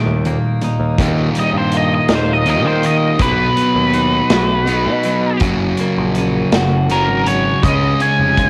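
A lightly reverberant home cassette recording of anthemic, restless quiet-loud alternative rock in 6/8, cut from a longer piece: a dark overdriven guitar riff sits up front beside compressed clean guitar arpeggios in the background with phaser and analog delay, a growly, bright overdriven picked bass with tube saturation, and a big-room acoustic drum kit with punchy kick, medium-tuned snare and hi-hat, and at 1.4 s a distorted octave-fuzz lead guitar enters up front for a solo over chords moving through Eb, B, Gb and Db.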